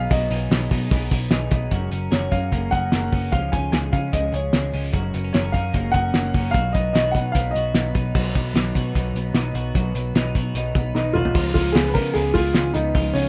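Nostalgic and breezy, this excerpt of jangly indie pop at 149 BPM sets an up-front, woody upright piano melody with audible action noise (dropping out between 7.9 and 10.9 seconds) over bright, twangy twelve-string electric guitar arpeggios, a slightly broken-up electric guitar with analog chorus tucked in the background, a round, foam-muted picked bass and a muffled, cloth-damped drum kit with a fat snare that plays a fill at 11.0 seconds, all in a rough home-demo mix with a small-room sound, moving from Cb6 through Gbadd9, Db and Cb to Db7.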